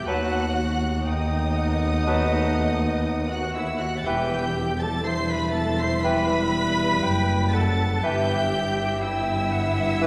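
This is a slow romantic movement for symphony orchestra in E minor, a melancholic, yearning passage at 60 BPM in 4/4, taken with a rubato feel and cut from a longer piece. High violins carry the melody with a clear, even, vibrato tone, while a second violin section beneath them adds a dark, lush line marked by expressive portamento. Clarinet, flute and oboe add second lines of their own: the clarinet warm and distant, the flute airy with a straight tone in the background, and the oboe sustaining a single roomy B4 from 0.1 seconds. Violas and a softly attacked bassoon fill in the accompaniment, a tight French horn section holds mellow sustained chords, and the bass is anchored by a focused double bass section, the loudest part, with cellos in the background. The harmony moves from B7/D# to Em at 4.1 seconds and settles on Em/G at 8.0 seconds, all within a dark, wet concert hall reverb.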